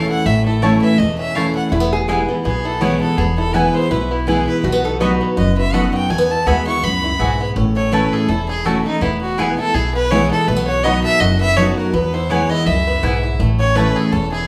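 Recorded live in one room with a large studio reverb, this rustic, driving bluegrass excerpt in E major swings at 164 BPM as a rich, earthy bowed fiddle carries the melody up front over a full-bodied picked acoustic guitar with finger squeak, bright twangy banjo arpeggios, a woody, growly upright bass, mandolin stabs with doubled strings from 0.6 s, and a nasal, metallic slide resonator guitar adding brief second lines at 1.7 and 4.6 s.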